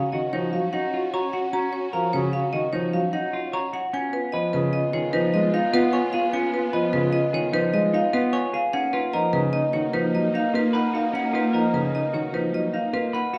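Hypnotic and propulsive, this excerpt of classical minimalist pattern music moves at 150 BPM in 6/4 in Db mixolydian, its chords shifting from Ebm7 to Db7 at 3.9 seconds and Cbmaj9 at 8.7 seconds. A bright, percussive marimba struck with hard mallets carries the melody up front, beside a boxy grand piano accompaniment, while a clean, picked semi-hollow electric guitar spins arpeggios and a dark clarinet traces a second line in the background. A lush, bowed string section with vibrato sustains chords beneath, all set in a wet recital hall reverb with a dark, warm production.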